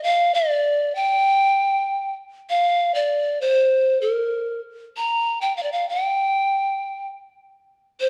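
In a straight 2/4 at 97 BPM, this earthy, melancholic Andean folk fragment in G minor pentatonic features a solo bamboo pan flute, breathy and hollow with a straight tone and tongued chiff, that sits up front between Bb4 and Bb5 for 8.1 seconds, framed by a moderate scoring-stage reverb and a dark production.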